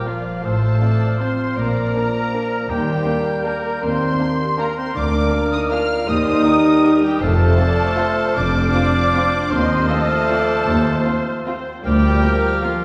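A wet scoring-stage reverb places this classical orchestral passage at a distance, as if heard from further back in the hall, and it is cut from a longer piece. Moving in an elegant, sweeping 3/4 at 158 BPM with rubato and uneven beats, it begins on F/A and passes through Ebmaj7 and F7/Eb before settling on Bb/D near 11.8 seconds. Muted violins carry the melody high in their range with a veiled, con sordino sheen and lush vibrato, while a second, very quiet violin line sits far beneath them. Around them weave three woodwind lines: a present, clear oboe, a clarinet further in the background, and a hollow, airy flute with a crisp attack perched above the strings. Muted violas and a punchy bassoon fill the accompaniment, and a dark, tight French horn section, the loudest part, holds smooth sustained chords. From 0.4 seconds the muted cellos and double basses, the latter with a soft attack, anchor the low end until just before the close.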